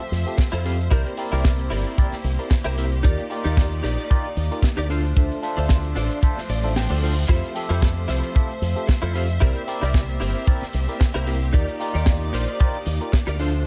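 A lightly swung sixteenth-note groove in 4/4 drives this groovy, feel-good nu-disco excerpt, built on an up-front, tight kick and a dry, polished funk kit of hi-hat, shaker and high-tuned snare beneath a fingered electric bass with an envelope filter and sidechain pumping. A bright, clean direct-recorded electric guitar riff with chorus and slapback echo rides over a barky, lightly overdriven tine electric piano with phaser, while a rich, biting symphonic string section holds pumping sustained chords that cycle through Fmaj7, C7, Ebmaj7 and Dm7. Around 6.2 seconds the guitar plays a fill, joined at 6.6 seconds by a soft electronic reverse cymbal in the background, and the kick drops out from 6.8 to 7.3 seconds before the groove returns.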